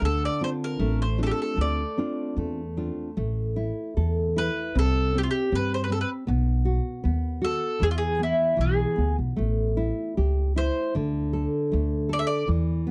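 A round, double-strung mandolin carries the picked melody up front in this longing, passionate fado-style ballad, flowing in free rubato over a dark, full-bodied fingerpicked nylon-string guitar and a thumpy pizzicato upright bass. It is all captured in a dry, close 1970s-style studio sound, and the mandolin drops out at 12.5 s.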